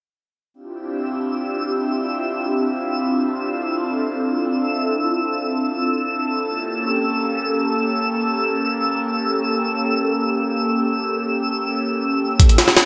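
An airy, breathy pad with chorus, phaser and 12-bit sampler grit holds sustained Dm11 and A7b9 chords in this nostalgic, atmospheric drum and bass and jungle excerpt, joined from 1.0 s by a twinkling granular texture with an octave-up shimmer, all bathed in a lush hall reverb until a gritty, pitched-up jungle sampler kit with a thumpy kick and high-tuned snare comes in up front at 12.4 s.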